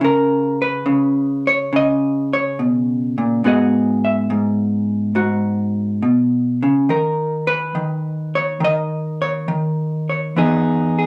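A vintage hollow-body electric jazz guitar plays alone from 0.0 to 11.1 seconds, dark, clean and up front, in this cool, moody fragment of solo jazz in G# minor at a rubato 70 BPM with a loose swing, moving through C#7(no3), G#m7, Bmaj9/D# and Emaj7, captured as a gritty cassette recording with a modest small-room reverb.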